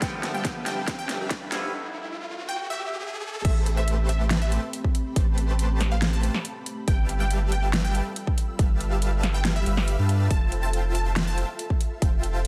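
Future bass in a dreamy, bittersweet half-time feel, this excerpt builds with a riser, drum fills and a brief twangy clean electric guitar under a lush, detuned unison pluck melody and a huge, compressed supersaw riff, breaks at 1.7 seconds, then drops at 3.4 seconds as a deep, saturated sub bass joins the punchy overdriven kick, huge snare and metallic hats, all over an ethereal, mellow pad pumping in the background.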